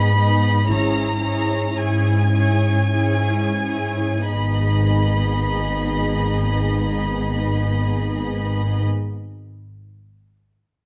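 Up front and lush, the cello section holds a low G#2 bass beneath this yearning, melancholic slow romantic movement for string orchestra. It moves in a rubato 3/4 at roughly 41-60 BPM in G# minor, slowing through its opening 4.3 seconds. The double basses enter at 0.7 seconds with a focused G#1 as the harmony shifts to C#m/G#, while a distant, smooth violin melody sits high over a second violin line and expressive viola accompaniment. Light reverb and close, detailed microphones frame this brief section cut from a longer piece.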